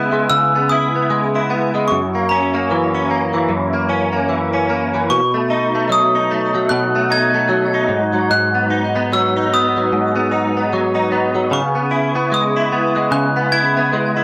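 A moderate studio reverb gives this short fragment of a longer piece a soft, hazy glow, with the clean electric guitar sitting up front and a glockenspiel playing more quietly above it. It is mellow indie pop in four, moving at an unhurried pace with a lilting swing on the sixteenths. The direct-recorded guitar carries the accompaniment with a twangy, compressed, picked tone, thickened by an ensemble chorus, a warbly pitch drift and a plate reverb. The close-miked glockenspiel, struck with hard plastic mallets, carries the melody with a sparkling, bell-like ring, dressed in a lush chorus and plate reverb. Both parts play together for the full 14.2 seconds over a seventh-chord progression of C#m7, F#7, B7 and G#m7, returning to C#m7 at 11.5 seconds.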